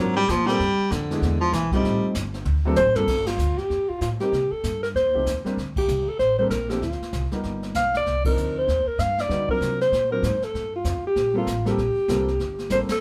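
Late-night and cool, this swinging small-group jazz fragment opens with a breathy, whispered baritone saxophone solo over warm baby grand piano, woody pizzicato upright bass and a brushed drum kit with a boomy kick, before a dark alto saxophone with vibrato and scooped notes takes the melody up front from 2.8 seconds, the band striking accents together in a moderate live-room reverb.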